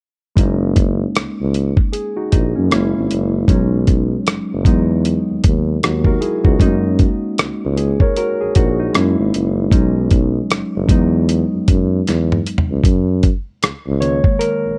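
Swung sixteenths in 4/4 give this relaxed, soulful neo-soul R&B excerpt its loping pocket, carried by a gritty, compressed sampler-style drum kit with a thumpy kick, medium-tuned snare, rim clicks, hi-hat and toms, and a punchy, close-miked tuba playing the bass line with vibrato. A reedy, clean electric piano heard through its built-in speakers and touched with spring reverb comps rich ninth and sixth chords that cycle through the progression. A drum fill at 12.1 seconds leads into an electric piano solo at 12.8 seconds, all captured in a dry, close 1970s-style studio sound with every part up front.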